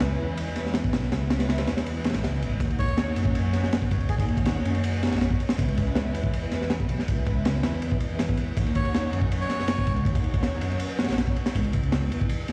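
Drum and bass with a jungle edge at 161 BPM in Eb phrygian, this atmospheric, raw excerpt sets a crunchy, saturated breakbeat kit of tight kick, high-tuned snare and dark ride cymbal up front beside a deep, rumbling detuned saw bass, under lush bowed string chords moving between Dbm7 and Ebm7, with a brief break from 1.9 to 2.6 seconds. A reedy, breathy melodica carrying dub echo drifts in for short phrases at 2.8 and 8.8 seconds, and the strings stop at 11.5 seconds while bass and drums carry on. The sound has the feel of a big sound system in a bare room, with large studio reverb and vinyl crackle.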